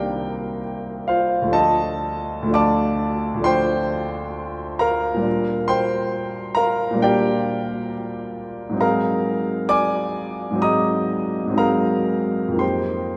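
Bathed in a long, wet church reverb, this brief fragment of dreamy, hazy impressionist classical music features a solo concert grand piano, warm and natural with a deep bass, placed up front as it drifts with rubato at 56-69 BPM in 4/4 in Bb major through lush extended harmonies from Cm9 and Dm7 to Bb69 at 5.3 seconds, Ab9 at 8.8 seconds and a closing F9sus4 at 12.6 seconds.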